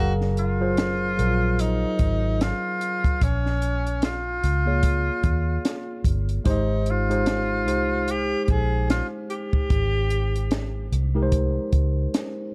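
A tenor saxophone carries the melody with a light vibrato and a roomy, pop-styled solo tone, singing over this short clip from a longer piece until it drops out at 10.9 seconds. The setting is lush 1970s-style soul in Ab major at 74 BPM in 4/4, with a gentle swing on the sixteenths and a romantic, warm mood. A worn tine electric piano, slightly out of tune but clean through a combo amp, supplies the accompaniment and plays on to the close at 12.5 seconds. Underneath, a vintage foam-muted fingered electric bass sits up front with a round, punchy, amped sound, joined at 0.2 seconds by a compact cocktail drum kit of hi-hat, punchy kick and high-tuned snare, smooth and rolled-off in a small room. The harmony moves from Gbmaj9 to Bbm7 to Abmaj7, and studio reverb wraps the dark, warm production.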